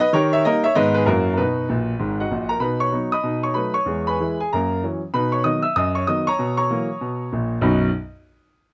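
Swinging eighth notes drive this playful stride piano excerpt at a brisk 192 BPM in 4/4, set in B major, with a concert grand that sounds clear, open and up front, its deep bass anchoring the harmony. The solo piano moves through changes such as G#m, F#7, B7 and E, slips in a fill at 1.7 s, and comes to rest back on B before falling silent at 7.9 s. The close, detailed miking and almost dry room bring out every note the piano plays, from G#1 up to E6.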